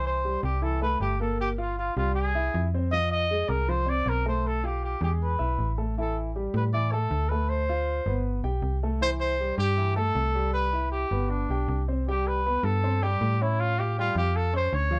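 Afro-Cuban jazz with a danceable, sophisticated mood, this short cut from a longer piece features a mellow, soft-edged trumpet leading the melody with a roomy, slightly distant jazz tone. A warm concert grand piano supplies intimate accompaniment, its deep low end and audible action noise keeping the sound natural. A slap-like FM bass adds a snappy, metallic, digital attack that then decays, all captured through close, detailed microphones with light reverb as the harmony moves through colorful chords such as Gm7, G13/B and Aaug7.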